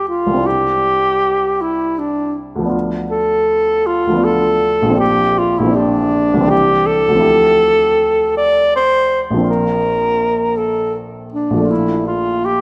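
A clear alto saxophone carries the melody in a classical style with light vibrato, sitting up front over a warm baby grand piano that provides a present accompaniment in the lower and middle registers. This hazy, wistful impressionist duo moves in a rubato triple metre through soft-edged harmonies such as Cadd9, Dm11 and Bb69, settling on Bbmaj7 near 11.7 seconds. A moderate scoring-stage reverb surrounds the pair in this brief passage cut from a longer piece.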